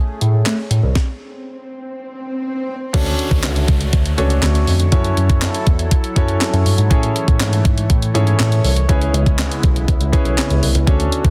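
A straight 4/4 groove at 121 BPM drives this short dance-pop cut in C# phrygian, with a bittersweet yet driving mood and a clean 12-bit drum machine up front, delivering a thumpy kick, medium-tuned snare, handclaps, hi-hat and crash with a tape-tinged, sampler-style character. Underneath, a shimmering, retro pulse-width pad holds sustained chords with slow attack, long release and chorus, pumping with sidechain compression from the very start. An unusual bell-like tine electric piano carries the bass line, bright and direct, also breathing with sidechain pumping. After a stop at 1.0 seconds, an electronic swell rises from 1.4 seconds, and a downlifter trails off by 6.9 seconds. From 2.9 seconds a clear, polished baby grand piano joins with accompaniment over chords moving from Dmaj7 through F#m7 and Amaj7 to C#m7, all set in a dry, dense, heavily limited modern mix.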